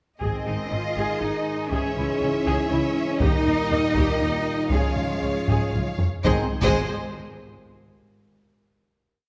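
Cinematic, epic orchestral film score in 3/4 at 120 BPM, adventurous and majestic, with a distant, lush violin section singing the melody over softer-attack second violins, a driving viola ostinato, focused cellos and a close, bowed double bass ostinato moving through Ab, Dbm, Eb and Db. Clear French horns, punchy trombones and mellow woodwinds hold sustained chords in the background, while heavy-stick taiko strokes, compressed and saturated, power the whole piece, with a drum fill at 5.5 s. Round, soft-mallet timpani strokes mark the opening and the final Ab chord at 6.2 s, all set in a moderate scoring-stage reverb.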